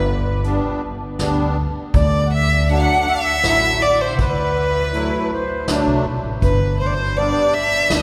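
Festive yet soulful, this klezmer passage moves in a straight 3/4 at 80 BPM in G major, drawn from a longer piece and sitting in a long, cathedral-like reverberant space. A rich, focused solo violin carries the melody up front, bowed with vibrato, while a reedy, dark accordion shadows it as a smooth second line in the same register, its slow beating adding gentle motion. The upright bass plays pizzicato on gut strings, woody and thumpy, standing forward in the mix. From 0.4 seconds a close-miked musette accordion fills in the accompaniment with a shimmering, full, dry tone, joined at the same moment by a vintage brush kit of hi-hat, punchy kick and medium-tuned snare with a natural, rolled-off top. The harmony rests on G, shifts to D at 1.9 seconds, and returns to G near the close.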